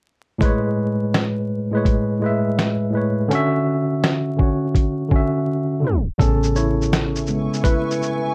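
A swung 83 BPM lo-fi hip hop groove in 4/4 rides on a muffled, pitched-down sampler kit of thumpy kick, medium-tuned snare, hi-hat and shaker, under a worn, slightly out-of-tune tine electric piano with light overdrive moving between Amaj9 and Dmaj9 in A major. The mood is nostalgic and mellow, with vinyl crackle over a modest room sound, and a break at 5.5 s ends in a tape stop before the electric piano takes a solo at 6.2 s. There a round, punchy, foam-muted dub bass briefly joins, and a cloudy, evolving granular pad with a slow attack and its own reverb drifts in at 7.2 s.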